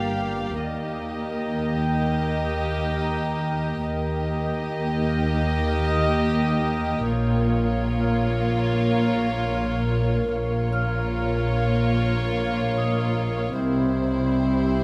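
Tense and uneasy, this slow cinematic suspense cue at 74 BPM is cut from a longer piece, with chords shifting from Gm7 and Eb to Bbm and finally C at 13.6 seconds. Chamber strings bowed sul tasto carry it: two intimate violin sections with light vibrato share the melody and a second line, a dark viola section sits in the background, a woody cello section with vibrato adds depth, and an up-front double bass section grounds the bass. A bubbling, detuned sawtooth texture with resonant random filter steps, chorus and its own reverb holds sustained chords, while a mellow, ringing vibraphone played with soft mallets, motor off, glints quietly behind them in a lightly reverberant room.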